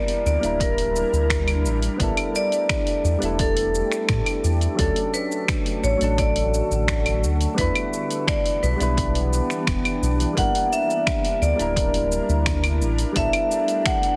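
A bright, ringing vibraphone carries the melody from the first moment over soft, mellow electric-piano-like synth keys with chorus and delay and a shimmering, ethereal pad of sustained chords, setting a relaxed, sunny sunset chillout mood at 86 BPM in D major. A deep house kit of claves, finger snaps, hi-hat and shaker arrives almost at once, joined at 0.3 s by a round, deep analog bass sitting up front and at 0.6 s by a punchy, overdriven electronic kick. Chords move through Gm6, A9sus4, Dmaj7 and Em7 under light reverb and a heavily compressed, radio-like sound in this short cut from a longer piece.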